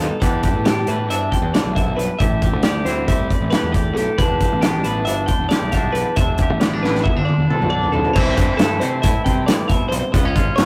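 Math rock and midwest emo cut from a longer piece, intricate and wistful in 9/8 at 272 BPM in E minor: a clean, fingered twangy electric guitar with spring reverb plays accompaniment, a bright, compressed twelve-string electric guitar picks high arpeggios, a round, punchy fuzz picked electric bass adds overdriven grit, and an up-front loose indie drum kit with dark cymbals and a tight kick plays a fill from 6.8 to 8.2 seconds before the chords shift from Em7 and Am9 to C6 and C#7, heard through a rough rehearsal-room sound with warm saturation.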